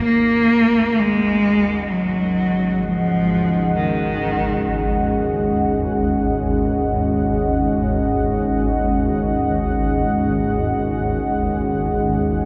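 A woody, up-front cello with vibrato sounds from the very start of this unsettling, ominous excerpt of free-time dark ambient drone, bowing a low melody over a deep, moody pad of detuned sawtooth chords with chorus, while a swarming, granular drone with ring modulation fades in beneath them from 0.1 seconds. The cello falls silent at 5.1 seconds, leaving the slow-attack pad and the tense, evolving drone to sustain on a G#5 chord until 12.5 seconds. A cavernous cathedral reverb and a dark production with a rolled-off top end wrap the whole drone in heavy shadow.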